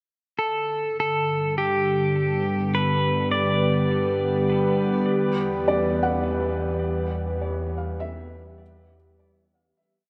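A short, peaceful ambient piece at a slow 51 BPM in G major, moving from G to Em and bathed in a huge, wet reverb. A bright, twangy pedal steel guitar with delay plays a call-like motif with slide and volume swells until 5.0 s, over a warbling, nostalgic tape-like pad of detuned chords and a deep, round sub bass that fades in beneath. From 5.7 s a soft, felt-muted upright piano with audible action noise scatters delayed arpeggios as the piece fades out.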